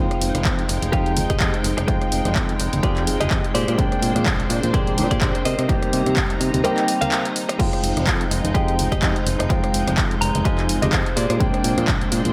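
A punchy electronic kick drives this 126 BPM filtered disco house groove in 4/4, with a 56% swing on the 16ths giving it a loose, rolling bounce in F dorian. An analog drum machine adds crash cymbal, handclaps, hi-hat and rim click, its hats and cymbals pumping against the kick, while bright maracas and congas, played with hard hands, sit further back under a low-pass filter. The bright, fingered electric bass carries tube saturation and pumps alongside a clear, intimate grand piano whose audible action noise comes through a phaser and vintage 12-bit sampler grit. Above them a lush, vintage string machine holds slow-attack sawtooth chords with ensemble chorus, moving through Fm9, Bb13 and Cm7, and a twangy, compressed clean electric guitar picks out a riff, adding a short fill from 10.0 to 11.4 seconds. Light digital ambience frames this nostalgic, groovy excerpt of a longer piece.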